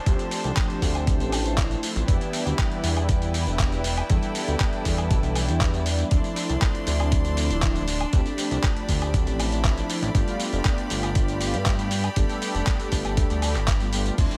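Nu-disco at 119 BPM in a straight 4/4, sleek and sensual, this excerpt from a longer piece opens with a very quiet electronic downlifter that runs until 2.1 seconds, while a gritty, overdriven electronic kick drum thumps up front beside a dusty soul sampler-style kit of crash, handclaps, hi-hat, tambourine and woodblock, a fat, detuned, wave-folded analog bass carries the low end, a round, dark synth brass with chorus and dub echo plays accompaniment, and a clear, biting string section holds bowed chords with light vibrato and sidechain pumping over a Dm7, Em7, Dm7, G7 progression in a digital ambience.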